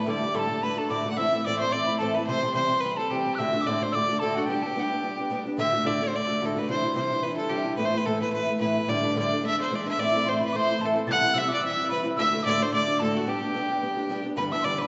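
A swung Celtic reel at a brisk 218 BPM in 4/4, this rollicking, cheerful clip from a longer piece is carried by a single up-front fiddle with a nasal, earthy tone, light vibrato and an airy bow. A metal tin whistle with a tongued chiff and straight tone adds a second line above it, dropping out at 5.4 seconds and returning at 10.0 seconds. An old ladder-braced acoustic guitar, picked and boxy with audible finger squeak, keeps the accompaniment close and warm, while a wet concert-hall reverb gives the whole recording a soft, dark-edged ring.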